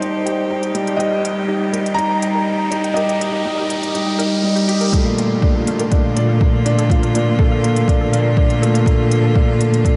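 Piano and strings electronica with a hopeful, luminous mood, heard as a short cut from a longer piece in a steady 4/4. Two felt-muted upright piano parts lead, a soft, mellow riff running throughout with tape echo while an intimate melody with subtle chorus sings above it until 4.4 seconds. A clear string quartet holds sustained chords under sidechain pumping, joined by crisp electronic hi-hats and a very quiet, round analog pluck spinning arpeggios. An electronic riser builds from 0.6 seconds toward the drop at 4.9 seconds, where a punchy, layered electronic kick drum and a bowed cello section playing sul tasto with light vibrato arrive up front to carry the bass, also pumping. Everything sits in a dreamy mix soaked in a huge ambient reverb, its top end rolled off for a hazy, glowing finish.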